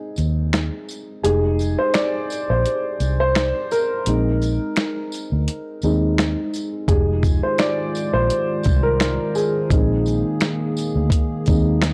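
Lo-fi hip hop with a nostalgic, reflective mood, this short cut from a longer piece features a woody, slightly detuned upright piano playing a solo from the start, filtered and worn, moving between Fm7 and Bb7sus4 chords over a swung groove. A round, foam-muted electric bass and a gritty sampler-style drum kit with a thumpy kick, snare, hi-hat, shaker and finger snaps sit up front alongside a faint jingly tambourine, and a moody, nasal analog pad with chorus and a slow attack joins at 6.9 seconds. The dry, lightly reverberant sound carries the grain of cassette tape.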